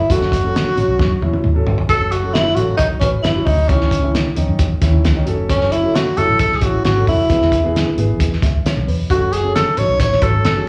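A straight, driving 4/4 at 133 BPM propels this urgent, uptempo 1960s-style soul excerpt in F# dorian, with a cloth-damped, thuddy, gritty, lo-fi drum kit sitting up front with a fat snare and tight kick, and a drum fill from 1.0 to 1.9 s, while a foam-muted, round fingered electric bass holds down the low end. Over them a breathy tenor saxophone carries the jazz-style solo melody with whispered vibrato and scooped notes, and a dark, mellow grand piano with audible action noise fills in the accompaniment, both touched by plate reverb and slapback echo. The harmony moves from F#m to C#madd9, back to F#m, then to E and home to F#m, all heard as a live gig through the venue's PA, with club reverb and small-room ambience around it.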